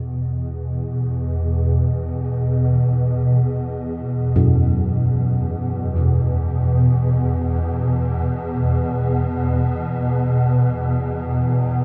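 An up-front swarming drone of detuned, granular sine tones, tense and slowly evolving in its own built-in reverb, holds a bare E5 in this unsettling, ominous dark ambient fragment in free time, until bright, bronze gamelan-type bossed gongs enter in the background at 4.4 s with airy, beating metallic arpeggios under a diffuse ambient delay as the harmony opens to Esus2, stopping at 10.8 s within a light studio reverb.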